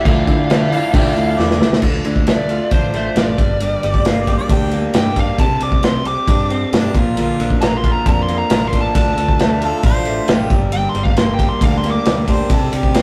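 A smooth, dark overdriven lead guitar opens this wistful, reflective folk rock and heartland rock excerpt at 135 BPM in D minor, sounding together with a picked plugged-in steel-string acoustic guitar, a slightly broken-up, lo-fi electric guitar riff through a small old amp with spring reverb, and a very quiet, reedy pedal harmonium. A fingered electric bass and a natural country drum kit come in almost at once, the kit up front with a punchy kick, a medium-tuned snare and a rolled-off top, and a drum fill at 1.4 seconds leads into the lead guitar solo at 1.8 seconds. A clear harmonica with light vibrato and scooped notes carries a second line from 0.7 seconds, while the acoustic guitar sits in the background with audible finger squeak. The harmony moves through Dm, Gm, Csus2 and Bb, and the breathing harmonium drops out after the opening, returning at 8.9 seconds. The whole excerpt has the rough feel of a rehearsal-room recording with tube saturation and light reverb.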